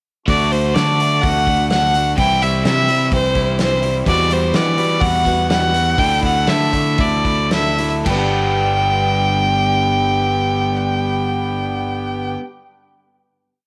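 Light reverb and a small-room ambience frame this short, jangly and nostalgic piece of folk and heartland rock. An up-front fiddle plays a motif-based melody with light vibrato, over a boxy, picked acoustic guitar strumming open chords with a swing lilt, a growly, punchy fingered bass with a dotted figure, a bright, overdriven electric guitar ringing double-tracked chords in the background, and a very quiet, reedy accordion holding airy chords. A natural country drum kit with a punchy kick drives the pre-chorus as it slows from 4.1 seconds, then drops out at 8.2 seconds, leaving the band to let a final chord ring out.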